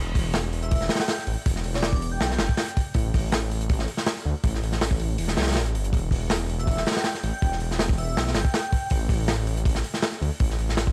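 A small-room reverb and vinyl crackle give this raw, atmospheric drum and bass cut its dusty character. A crunchy, saturated breakbeat kit sits up front with a tight kick and gritty, rolled-off top, while a thick, menacing detuned saw bass beats up front alongside it over a move from Em7 to Am and back to Em. An airy, dreamy lead with chorus, vibrato and dub echo drifts in the background, appearing at 0.6 seconds and again at 6.6 seconds.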